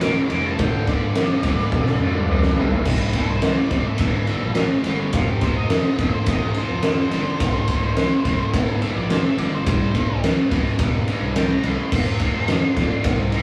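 Raunchy and swaggering, this short cut from a longer blues rock power trio jam leans into southern rock grit at 106 BPM in a straight 4/4, centred on C major. An oversized, low-tuned drum kit sits up front with a fat snare, punchy kick and dark cymbals, its saturated sound carrying a bright stone-room character, and a drum fill at 1.7 seconds leads into the solo section at 2.9 seconds. A double-tracked, overdriven electric guitar picks a low riff, while a fuzz-driven picked bass sits in the background, direct and amped. For the opening few seconds a very quiet overdriven tonewheel organ holds thick sustained chords with key click, chorus vibrato and a rotary speaker before dropping out at 2.8 seconds. An octave-fuzz lead guitar with a dusky, distorted tone takes a solo over a progression that moves from C and F7 to bare C5 and F5 power chords. The rough rehearsal-room recording has saturated warmth, small-room ambience and moderate studio reverb.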